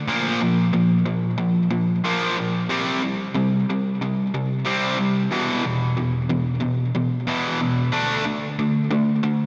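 Dark and brooding, this short rock cut from a longer piece features a lone cranked stack guitar, bright, overdriven and double-tracked up front with slapback echo and digital delay, moving through Bb5, C5, E5 and D5 power chords in a lush hall reverb that gives it a big arena sound.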